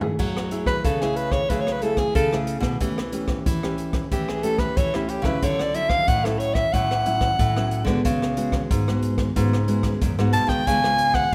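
A samba and choro excerpt, sunny and lively, cut from a longer piece and set in a straight 4/4. It opens on a break with a drum fill from an open jazz drum kit that sounds acoustic and up front, with dark cymbals and a boomy kick among its crash, hi-hat, rim click and toms. A fingerpicked nylon-string guitar supplies classical-style accompaniment with audible finger squeak, while a second, full-bodied nylon-string guitar carries the bass line from 0.2 seconds. At 0.7 seconds a breathy soprano saxophone takes the melody as a jazz-style solo, close-miked and clear with vibrato, sitting up front. The harmony moves from F#m9 through A7/E and Dmaj9 to C#7sus4 and C#7, all placed in a moderate concert hall reverb.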